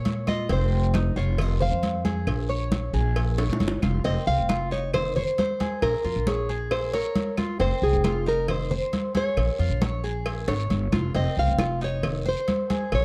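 A dry, close recording in a 1970s studio style frames this sultry excerpt of Cuban son and guajira in F minor at 135 BPM, moving between Fm7 and Bbm7. Up front, a fingerpicked classical nylon-string guitar with fresh strings and slapback echo carries the melody and takes a solo through the opening 4 seconds, over mellow, metallic arpeggios from a double-strung Cuban tres and a thumpy, woody pizzicato upright bass on gut strings. Bright congas, tight, high-tuned cowbell and bongos, and a raspy guiro and claves in the background keep the groove, with drum fills at 3.4 and 10.5 seconds.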